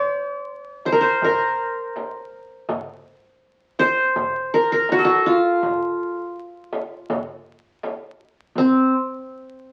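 Set to a straight 4/4 pulse at 82 BPM, this melancholic, hypnotic excerpt of a Turkish makam ensemble in F makam hicaz places a bright-edged, plectrum-plucked qanun up front carrying the melody from the start, joined by a small frame drum at 0.9 seconds and a crisp metal-shell darbuka played with soft hands in the background from 1.1 seconds, all heard through a wet studio reverb and the crackle of a very old 78 rpm record.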